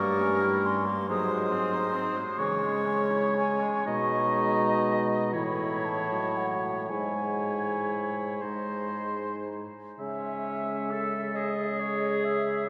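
A classical, slow romantic movement for wind quintet in 6/8 and C# minor, this melancholic, yearning passage moves at 37-48 BPM in dotted quarters with a free, rubato feel, cut from a longer piece. A hollow, airy baroque flute carries the melody with a straight tone and soft attack, while a clear oboe with light vibrato sits up front on a second line beneath it. A bright, vintage-sounding clarinet and a dark, soft-edged French horn fill in the accompaniment, and a dark bassoon with light vibrato anchors the bass, sounding roomy yet close. All five parts play together from the start until the end near 12.7 seconds, with a brief new section arriving at 10.0 seconds. The harmony opens on a diminished chord and turns through C# minor, A and G# before settling back on C# minor, and the whole group is bathed in a cathedral reverb with a long six-second tail, recorded in a church or concert hall.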